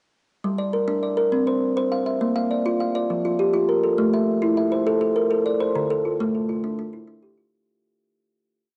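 Trance-like and hypnotic, this short southern African traditional piece sets a solo kalimba turning an interlocking mbira-style ostinato in a straight 12/8 at 136 BPM, moving through Gm, C, Bb, F and Am before settling on Dm. The woody, bright, ringing tone of the thumbnail-plucked solid board sits up front and mid-forward, spanning D3 to F5, with a cassette tape character. A lush hall reverb surrounds it, the home cassette recording softens the top end, and the piece fades out from 5.8 to 7.5 seconds.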